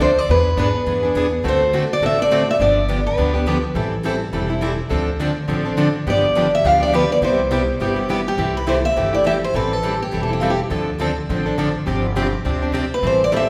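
Swinging and lively, this short cut from a longer jazz manouche piece races along at 207 BPM in C major with a light swing on the eighth notes. A picked steel-string acoustic guitar with a parlour body and fresh strings carries the melody up front, ranging from F4 up to F5, playing in phrases that break off and return, with a final brief figure near 12.9 seconds. Beneath it, a plugged-in concert acoustic guitar, also up front, and a bright, full-bodied jumbo acoustic set further in the background supply steady accompaniment throughout. A woody, thumpy upright bass with gut strings is plucked low and dark, anchoring the changes through dominant sevenths and minor sevenths that pass through Cmaj7 and C6 before arriving on G7sus4. The group sits in a reverberant recital hall with a 1.3-second decay, giving the small string ensemble a roomy, church-like glow.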